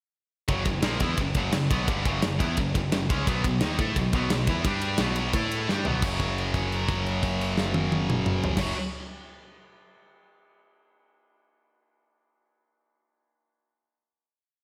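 A straight 4/4 metal drive carries this short, dark, heavy piece, where a double-tracked, high-gain guitar with slapback echo pounds out a distorted power-chord riff, a growling, overdriven picked bass doubles it in driving eighth notes, and a tight acoustic kit with bright cymbals and a tight kick sits up front until a drum fill at 5.7 s leads into a final held chord from 6.0 s, the band framed by a lush hall reverb for a big arena sound.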